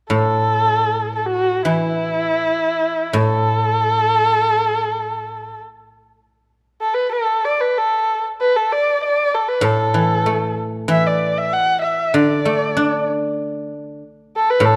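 A dark, woody erhu carries the melody throughout this excerpt of Chinese traditional chamber music, played bowed by a single player up front, with vibrato, portamento and a smooth top across a range from E4 to F#5. The mood is pastoral yet festive, moving in a rubato 2/4 with a tempo that drifts between 75 and 98 BPM, in the A zhi mode, tuned to A4 = 442 Hz. Beneath it, a guzheng plucked with fingerpicks gives ringing, silvery accompaniment in a lower register from A2 to D4, also up front but sitting a little below the erhu. The guzheng drops away at 5.5 seconds, leaving the erhu alone until the zither returns at 9.6 seconds, after the music has moved into a new section at 5.9 seconds. A light reverb gives the pair a gentle sense of space.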